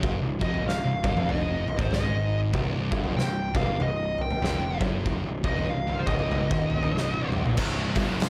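A swung 4/4 groove drives this short, sludgy stoner and doom metal fragment, cut from a longer piece and heavy from its first beat. Two thick fuzz guitars, one dark and one warmer, grind out a low riff over a Cm chord, sitting in the background beside a growly, punchy fuzz bass that is overdriven and bright. Up front, an oversized low-tuned acoustic drum kit dominates with a boomy kick, fat snare, dark cymbals, hi-hat, crash and toms, its saturated, gritty sound pumping in a big room. From 0.4 seconds a compressed fuzz lead guitar carries the melody high above, colored by wah and slapback echo. A drum fill at 6.9 seconds leads into a brief change at 7.6 seconds, where a double-tracked high-gain guitar joins in with a riff on a C5 power chord, all set in light reverb and small room ambience.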